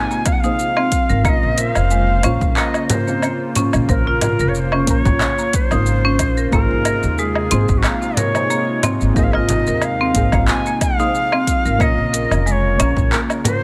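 A lightly swung 91 BPM groove in 4/4 drives this earthy organic downtempo cut in Bb minor, where a punchy, overdriven electronic kick and a deep house kit with metallic hats, handclaps, shaker and woodblock are joined by a woody pizzicato upright bass with tube saturation from 1.1 s and a small, bright hand-played frame drum from 2.9 s, beneath an airy, vibrato-laden cedar flute melody with tape echo, bright hard-mallet marimba arpeggios, a dark, soft chord stab with chorus, phaser and sidechain pumping sitting in the background, and a smooth, warbling vintage pad with 12-bit grit, set in light reverb as the harmony moves between Ab6 and Bbmadd9.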